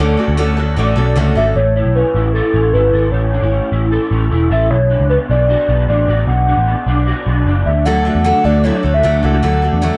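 Youthful and nostalgic, this indie pop passage, cut from a longer piece, moves at a brisk, straight four-beat pulse over a Dmaj7 that gives way to A, Bm and D. An electric guitar through a small old amp plays arpeggios throughout, its dark, slightly broken-up, lo-fi tone thickened by ensemble chorus and analog delay. Underneath, a vintage foam-muted electric bass sits up front with a round, amped sound. A full-bodied jumbo steel-string acoustic guitar picks an accompaniment at the opening and returns at 7.9 seconds, finger squeaks audible in its up-front tone. From 1.4 seconds a hollow, woody, clarinet-like synth lead carries the melody, soft and sustained with vibrato and chorus, while light reverb and a rolled-off top end lend the whole mix a hazy, faded character.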